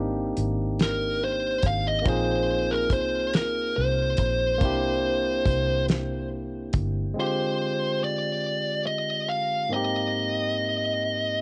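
A cassette home-recording sound and light reverb frame this late-night, yearning slow six-eight R&B fragment at 47 BPM in F dorian, where a bright, barky tine electric piano through a combo amp and a round, foam-muted fingered bass open together, a damped 70s drum kit with a fat snare, tight kick and gritty sampler texture joins at 0.4 seconds, and a compressed fuzz lead guitar solos up front from 0.8 seconds. The drums stop at 6.9 seconds and the bass soon after, leaving guitar and piano over chords that settle from Abmaj9#11 to Abmaj9.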